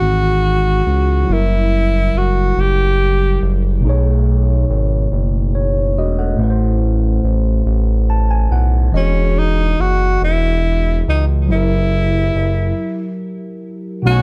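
A slow six-eight R&B groove at 47 BPM with a straight feel sets a sensual, warm mood in this short excerpt cut from a longer piece. A smooth synth bass sits up front throughout, its mellow, sustained tone blending sawtooth and square waves with a fast attack and a moving notch. Over it, an overdriven tine electric piano plays gritty, bright accompaniment through a combo amp and a phaser, adding a fill at 7.7 seconds. A breathy tenor saxophone carries the melody in a whispered, jazz-style solo with vibrato, scooped notes and tape echo, playing from the start to 3.5 seconds and returning at 9.0 seconds. The harmony moves through Emaj9, F#7b9, B13 and Am before circling back, and after a break a distant, punchy horn section lands a roomy stab doubled in octaves at 14.0 seconds. The production is dark, with little reverb and a warm overall sound.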